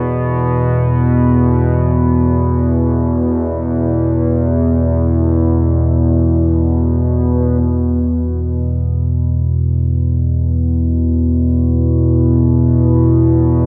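Dark and desolate, this ambient piece drifts with an unmeasured, floating pulse, cut from a longer work. A single analog drone carries the whole recording as a solo part from 0.0 to 13.7 seconds, sitting low between E2 and B2 and placed up front in the mix. Built from sawtooth and pulse waves with pulse-width modulation, its vintage, warbling tone evolves over time, shaped by a slow attack, long sustain and long release, with chorus and tape echo adding movement. The drone rests on an E5 chord, and the music moves into a second section at 7.6 seconds. A wet cathedral reverb with a 5.5-second decay surrounds the sound, blended with a small room ambience.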